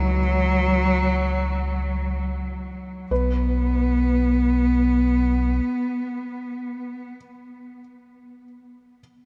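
Floating in free time, this ambient fragment opens mid-thought, tuned slightly high with A4 at 441 Hz, and carries a luminous, warm mood. A rich, intense bowed cello plays the melody up front, a single player with vibrato and a smooth top, its line trailed by delay until it falls away at 7.1 seconds. Beneath it, a deep, round sine-like sub bass with a fast attack holds sustained low tones, also up front, before dropping out at 5.6 seconds. Set back in the mix, a felt-muted upright piano traces soft, intimate arpeggios with short sustain and its own delay, lingering alone until 9.0 seconds. The harmony begins on an F#sus4 over C# and then dissolves into open, chordless sound partway through. Everything sits in a vast, echoing cathedral reverb with a long 6.4-second tail, coloured by the gentle haze of cassette tape.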